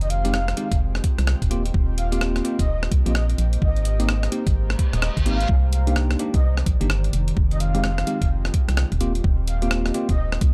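A swung two-step garage groove pairs a gritty, pitched-up breakbeat kit of hi-hat and rim click with an overdriven, knocking electronic kick that enters at 0.7 seconds, while a hollow, organ-like FM bass sits up front and pumps under the sidechain. Above it, a soft, flute-like synth lead carries the melody through chorus and digital delay, and bright, bell-like electric piano stabs echo over an Fm9, Eb6, Abmaj9 and Cm9 progression. An airy pad and a deep, moody ambient pad with built-in reverb hover in the background, and an electronic reverse cymbal sweeps in at 4.7 seconds, giving this late-night, soulful excerpt a dark, enveloping atmosphere.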